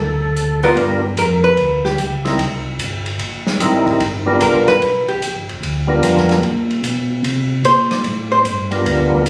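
A clean, dark, hollow-body archtop guitar sits up front in this bluesy soul jazz organ trio, accompanying in short picked bursts at 0.6, 4.4 and 7.7 seconds. Beneath it, a full, lightly overdriven, percussive tonewheel organ carries the melody through a slow rotary speaker and plate reverb. A second, round and mellow organ plays the bass, and a vintage acoustic kit with dusky cymbals, a punchy kick and a pumping small-room sound swings along, all caught on a phone in a soulful club setting with compression.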